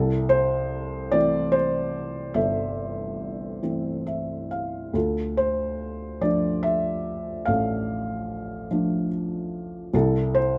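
Classical solo piano excerpt in D minor, reflective and melancholic, with a felt-muted upright piano playing alone at a rubato 48 BPM in 6/8, its dark, thick-felt tone close and intimate under light reverb, moving from C6 to Dm at 4.9 seconds after a brief fill beginning at 3.6 seconds, and returning to C6 at 9.9 seconds.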